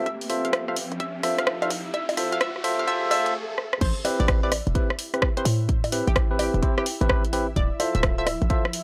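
A dry, gritty recording with transformer saturation and light reverb carries a moody, soulful UK garage excerpt in A minor, swung two-step at 128 BPM, where a clean tine electric piano stabs over a punchy, tight 808-style bass, a layered kick and a house kit of hi-hat, rim click, bongos and crash, the two drum parts re-recorded in a small room. A hollow, bouncy square pluck with chorus and tape echo carries the melody above a very quiet, ethereal pad and a soft, breathy background pad with sidechain pumping, while an electronic riser and a filter sweep on the electric piano build over Dm9 until a stop at 3.3 seconds and a drum fill. The drop lands at 3.8 seconds on Am9 and runs to the end, returning to Dm9 near the close.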